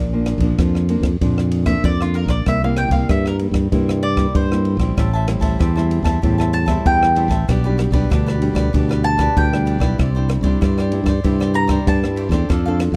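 This lively, playful blend of samba and choro moves at 96 BPM in a straight 4/4, cut from a longer piece and recorded dry and close in a 1970s-style studio. A fingerpicked nylon-string guitar with fresh strings and a small, intimate tone carries the accompaniment from the start, over a bright, growly electric bass that sits punchy and up front, while an open jazz kit in a natural small-room sound adds a boomy kick, dark ride cymbal and rim clicks. The picked mandolin takes the melody from 1.7 seconds, its doubled strings giving a round, forward voice that reaches as high as Bb5. At 5.0 seconds a crisp cavaquinho joins quietly in the background as a second accompanying part. The harmony moves from Bb through C7, Am7 and G/B to Cadd9, giving the short passage a lively, playful character.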